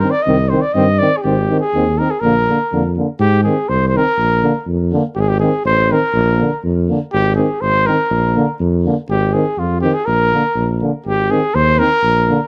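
A dark, smooth-topped trumpet with a touch of plate reverb leads this festive, wild Balkan brass band excerpt at 122 BPM in a swung 2/4, carrying the classical-style melody up front over two euphoniums, one mellow and one warm in the background, and a mellow, prominent tuba bass, with the trumpet and tuba both showing light vibrato as the close, detailed sound moves from C minor through alternating Ab and Bb chords.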